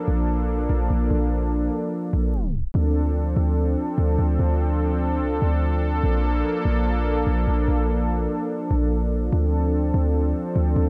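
Atmospheric cloud-rap hip hop with a hazy, melancholic mood and a half-time feel, cut from a longer piece. A smooth, detuned analog pad built on sawtooth tones holds sustained chords from the first moment, its soft attack and long release colored by chorus. Entering at 0.1 seconds, a deep, boomy 808-style bass with a sine core and a noise layer hits with a fast attack and then decays into a mellow tail, sitting up front with the pad. A tape stop at 2.3 seconds bends the sound down before the second section begins at 2.7 seconds. The harmony moves between Bbmaj7 and Dm7, wrapped in light reverb and a digital ambience that give the track its hazy space.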